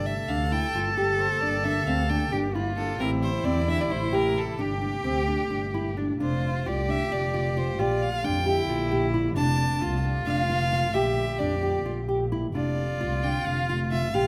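A close, bowed violin carries a focused, vibrato-tinged melody over an earthy cello second line, fingerpicked classical nylon-string guitar arpeggios, and a veiled, boxy con sordino double bass, all sounding together from the first moment of this pensive yet urgent contemporary chamber piece in 7/8 at 265 BPM (eighths). Beneath them, a deep, moody synth pad with chorus and its own reverb holds sustained chords in the background, moving from Gm through Am7 and Gmadd9 before the second section at 6.2 s sways between F6 and Bb6. Close, detailed microphones and a moderate recital hall reverb leave the bass and cello up front and the whole ensemble crisply present.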